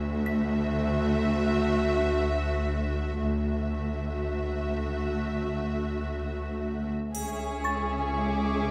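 Cinematic suspense film score at a slow 61 BPM in 4/4, uneasy and tense, heard here as a short cut from a longer piece. A violin section holds the melody on a sustained E5 with focused, bowed vibrato, while a rich, even viola section fills the middle and cellos and double basses share a low bass line, the basses sounding woody and distant beneath the softer-attacked cellos. A delicate, tinkling music box runs through the whole passage, close-miked and dry, its bright plucked notes sitting high above the strings. At 7.1 seconds the harmony shifts from Dadd9 to C#m and a close, dry triangle enters; a moment later a second violin line comes up front with a darker tone, joined by a high, smooth violin texture. The strings sit in a moderate scoring-stage reverb that gives the lush ensemble its bloom.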